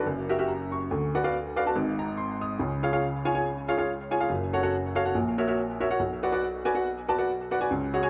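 A swung 4/4 pulse at 141 BPM carries this fervent, soulful gospel passage, taken from a longer piece. An upright piano plays solo for the full 8.1 seconds, spanning F#1 to D#6 with a woody, slightly detuned, vintage tone that sits up front. A tape echo trails its notes, and a moderate echo chamber reverb gives the short passage a sense of space. The harmony opens on F#7b9 and Bm/D and reaches a chordless moment near 1.8 seconds. It then moves through C#, F#m and F#7/A# before arriving on Bm at 6.0 seconds.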